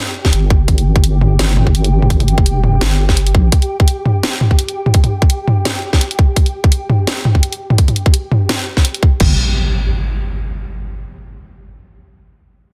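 A dense, heavily limited modern master in a digital ambience opens this heavy, spacious half-time drum and bass excerpt at 169 BPM in 4/4, with a light 16th-note swing. A flickering, grainy texture hovers low in the mix around G4, its detuned, granular tone fading in slowly and trailing off with a long release through its own reverb. Up front, a tight, layered electronic kick, re-recorded in a small room, drives alongside a produced kit of cracking snare, hi-hat, toms and crash cymbal. A deep, dark wobble bass with a chorused, rounded sine-like body sustains between F1 and Bb1 until 3.5 seconds. It returns briefly at 9.2 seconds, where an electronic impact hits and lasts until the end at 10.6 seconds.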